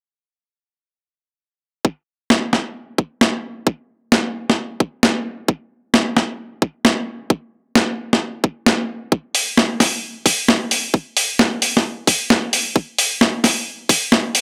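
Bouncy and soulful, this two-step UK garage excerpt moves at 132 BPM in 4/4 with a 64% swing on the sixteenths, played by drums alone in a single section. A tight, layered electronic kick sits up front with a high-pass filter from 1.8 seconds, joined at 2.3 seconds by a gritty, tape-warm sampler-style breakbeat kit carrying hi-hat and a medium-tuned snare, compressed and re-recorded in a small room. A moderate digital room reverb gives the pair a bit of space until the kit drops out at 14.4 seconds.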